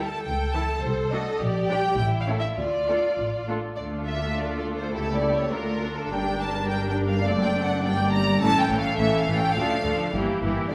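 Spirited and lively, this quick classical-period movement for string orchestra moves at 104 BPM in 2/4 in D minor, a brief cut from a longer piece with a new section arriving at 3.8 seconds. An up-front, warm first violin section carries the melody with smooth vibrato, while a more distant second violin line, a clear and focused viola section and a close cello section fill in beneath it. A rich double bass section anchors the low end, and the whole ensemble sits in the wet reverb of a recital hall.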